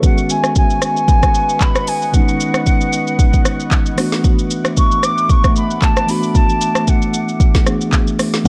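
Amapiano with a deep, soulful mood, this short excerpt rides a swung groove from an up-front electronic afro-pop drum kit of deep kick, woody snare, metallic hats, handclaps, rim click and shaker. A mellow tine electric piano plays clean accompaniment, while a moody, full-bodied detuned sawtooth pad with chorus and built-in reverb holds slow-attack chords over C#9sus4 and E9sus4. Above them, a pure, distant concert flute carries the melody with vibrato and digital delay until 7.7 seconds, in a dark, dry production.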